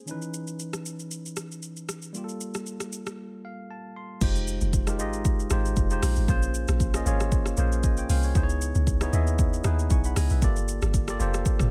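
A clean tine electric piano plays minor ninth chords through a filter sweep over an overdriven, up-front deep house kit of deep kick, metallic hats, rim clicks, shaker, toms and crash in this hypnotic, soulful amapiano excerpt, and after a brief piano-fill break the round, dark, percussive log drum bass drops in at 4.2 seconds, all set in a digital ambience.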